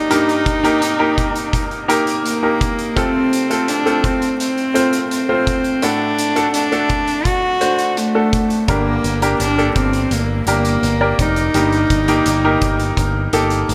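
A rich, intimate cello carries the melody up front in this driving, dramatic piano-driven pop excerpt, played by one bowed player with light vibrato and an airy, sul tasto tone. Beside it, a brilliant, polished grand piano plays the accompaniment with short sustain, sitting just as close. A loose indie drum kit with a punchy kick and rolled-off top keeps a straight 4/4 at 84 BPM on hi-hat and kick, its studio room pumping around it. At 8.7 seconds a picked electric bass enters, direct and warm in its low register, as the chords move from Eb/G through F and D to Gm before returning to Eb/G. Light reverb and bright 1980s-style digital production frame the whole passage, which is cut from a longer piece.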